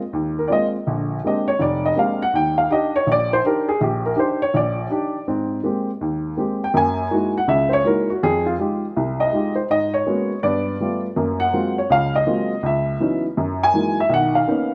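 A brisk swing at 163 BPM in 4/4, with eighth notes lilting at a 66% swing feel, drives this short solo jazz passage in Eb major, cut from a longer piece. A single upright piano carries everything from 0.1 to 14.7 seconds, ranging from F1 up to Ab5, its tone dark, woody and slightly detuned, sitting up front in a rough home demo mix. The mood is swinging and playful, with the harmony moving through rich extended chords such as Ab69, Bb13 and Ebmaj7 before drifting into more colorful territory like Abm11, G9 and Gbmaj9#11. The passage falls into two statements of the same section, the second beginning at 5.3 seconds and closing on a Bmaj9. A moderate plate reverb lends the mellow piano a gentle halo that lingers around each phrase.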